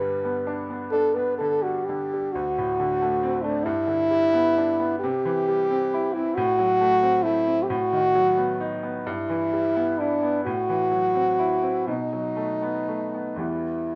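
A warm French horn and a bright concert grand piano begin together, opening a 14-second passage cut from a longer romantic classical duo. The mood is elegiac and melancholic, moving in a slow, rubato 6/8 at roughly 37-46 BPM counted in dotted quarters. The horn carries the melody, sitting up front and clearly above the piano in level, with a light vibrato and a present, solo character in the middle register. Beneath it, the piano's accompaniment has a brilliant, natural tone with deep bass reaching down to D2. The harmony starts in G and drifts through D7, C and diminished and half-diminished colours before settling on E minor, which darkens the close. A light reverb gives the duo a gentle sense of space.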